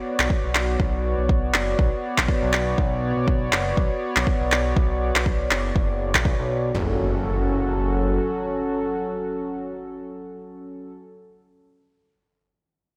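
A swung 16th-note groove at 121 BPM in 4/4 drives this hypnotic afro house passage in F# minor, led by an up-front, deep electronic kick and layered, tape-tinged handclaps. A smooth, detuned sawtooth-and-square synth bass with a moving notch pumps with sidechain beneath a warm, soft-attack analog pad whose chorused chords carry a gritty 12-bit sampler edge, moving from Bm to F#m at 6.7 seconds. The drums fall away by 6.4 seconds, and a faint electronic impact enters at 6.7 seconds as the sustained pad carries on in light reverb.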